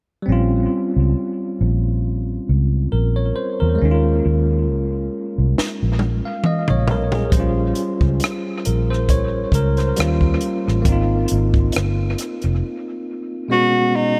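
R&B with a neo-soul lean, this short cut from a longer piece moves at a slow, gently swung pace and carries an introspective, soulful mood. A bell-like tine electric piano sets out the chords from the start, its clean, direct tone trailing dub echo, while a vintage muted fingered electric bass sits low beneath it with a round, foam-muted, amped punch. At 5.6 seconds a compact cocktail drum kit comes in with a fill that runs to 7.3 seconds. Its punchy kick, high-tuned snare, hi-hat, rim clicks and toms are dry at the source yet tinted with dub echo, and the kit then carries on alongside the bass. The harmony drifts through minor sixth-ninth and suspended dominant colours and passes a major sixth-ninth chord before landing on a suspended second chord. The bass and drums drop away at 12.6 seconds, and at 13.5 seconds a bright tenor saxophone enters briefly in pop style, its light vibrato floating over the electric piano. 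The mix is echo-heavy, set in a small room ambience with every part placed up front.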